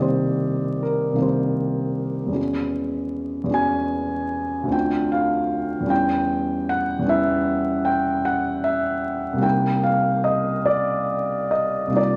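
Dreamy and luminous, this impressionist classical passage for solo piano drifts in a rubato 9/8 at about 51 beats per minute, cut from a longer piece. A clear grand piano sits up front, intimate and natural in tone with its action noise audible, and moves through Cm7, E69, Dm7 and Em6 before returning to Cm7 at 9.4 seconds. A moderate recital hall reverb and a layer of vinyl crackle surround the playing.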